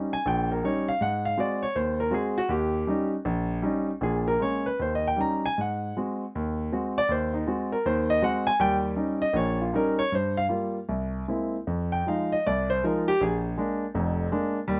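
Swinging loosely with a rubato push and pull in 4/4, this relaxed, sophisticated solo jazz excerpt spotlights a natural, up-front grand piano spanning F1 to Bb5, moving through bluesy dominant sevenths like Eb7 and Ab7 before a turn through Gm7, Caug7, Fm7 and Bb7, captured with close, detailed microphones and a touch of light reverb across its 14.8 seconds.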